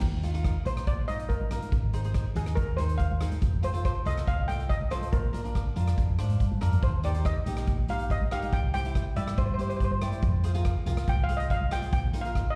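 A shimmering steel pan, struck with hard rubber sticks and carrying a slapback echo, leads this bouncy, sunny calypso excerpt from 0.7 seconds, over a crisp picked cavaquinho, a round, dark hollow-body electric bass up front, a polished street-band drum kit with a boomy kick and dark cymbals, and damped, high-tuned congas in the background, all heard as a live gig through the venue's PA with recital hall reverb.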